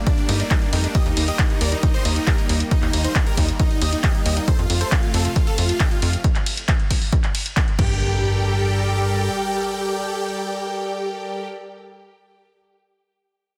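A dense, heavily limited modern mix with light reverb carries this driving, soaring uplifting trance drop in G minor at 136 BPM, cut from a longer piece and moving through Gmadd9, Eb and F. A huge, euphoric supersaw lead with tape echo carries the melody over a lush, detuned pad with phaser and gritty 12-bit sampler colour, both pumping with the sidechain, while a very quiet plucky unison lead with vibrato adds a catchy second line. A punchy, up-front kick and an analog drum machine with handclaps, hi-hat, ride and crash, both re-recorded in a small room, drive the beat beside a tight sawtooth sequencer bass; an electronic impact enters in the background at 7.8 s, and the drums stop at 7.9 s.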